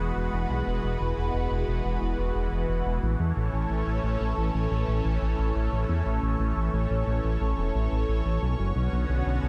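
A dark, detuned saw bass rumbles up front with tube-saturated grit beneath a lush, bright unison pad swirling with chorus and phaser, carrying sustained chords from Eadd9 to A and Bmadd9 in this uplifting, romantic synthwave fragment at 89 BPM, set in light reverb with a dense, heavily limited modern master.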